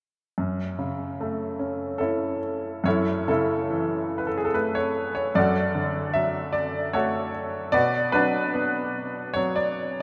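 A clear, intimate baby grand piano enters at 0.4 s, its audible action noise and short sustain sitting up front in a vast, echoing cathedral reverb, as this dark, melancholic classical solo piece, cut from a longer work, drifts in a rubato 3/4 at about 74 BPM in F# minor, tuned to A4 = 441 Hz, moving from F#m7 through D/F# to Bm, with a new passage beginning at 2.9 s.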